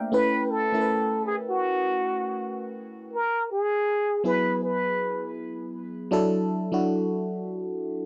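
A glassy, bell-like FM electric piano with a chorus sheen opens this smooth, soulful R&B passage at a relaxed 80 BPM in 4/4 with a swung sixteenth-note feel, comping through B9sus4, F#9sus4 and E9sus4 chords. Almost at once a plunger-muted trumpet takes the melody in an intimate jazz style, its breathy, whispered tone marked by wah-wah, vibrato and scooped notes, until it falls silent at 5.3 seconds and leaves the piano to carry on alone until 8.1 seconds. The dry, close sound of a 1970s-style studio is touched with light reverb.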